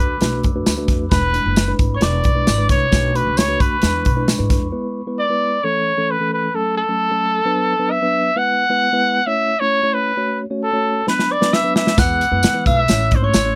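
A straight, danceable 4/4 groove drives this upbeat 1960s-style soul cut, where a punchy vintage trumpet with light vibrato carries the melody up front over mellow tine electric piano chords, while a woody pizzicato upright bass, a polished acoustic drum kit, a jingly tambourine and a bell-like glockenspiel in the background drop away by 4.7 seconds, leaving trumpet and piano alone until a drum fill at 11.1 seconds brings the rest of the band back under light reverb.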